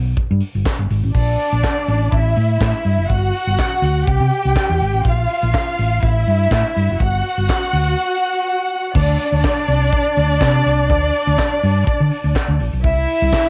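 Disco with a sultry, danceable pull, this short home-recorded cassette cut opens on a round, punchy hollow-body electric bass, tube-saturated and up front, joined within a second by a tight acoustic funk kit with dark cymbals, a high-tuned snare, handclaps and a cassette-tape grain, plus a jingly tambourine in the background. From 1.1 seconds a dark studio violin section carries the second line, its bowed ensemble tone smooth on top and expressive with vibrato and portamento, over chords moving from Bbmaj7 through A5, G5, C and Bb5. A break at 8.0 seconds gives way to a closing stretch on D7(no3) before a final C, all wrapped in light reverb and small-room ambience.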